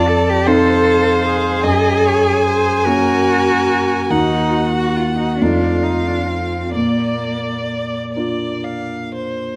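Classical slow romantic movement for piano quartet in Bb major, serene and lyrical at 41-52 BPM in a rubato 6/8, where a bowed violin sings a smooth, vibrato-rich melody above a cello second line of soft attacks and expressive portamento that ends at 8.1 s, an even viola accompaniment, and an intimate, up-front concert grand whose deep bass and audible action noise lend a vintage character, the quartet heard through moderate recital hall reverb and close, detailed microphones in a passage cut from a longer piece.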